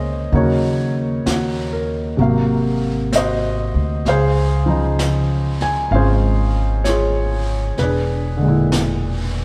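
A warm concert grand piano with audible action noise plays accompaniment in this intimate, melancholic jazz ballad excerpt in a gentle swing, moving through Ebm7, Ab13 and Dbmaj9 before landing on E7#11, over a woody, growly pizzicato upright bass and a distant, roomy brushed drum kit with a high-tuned snare entering at 0.3 seconds, all set back in a moderate echo-chamber reverb.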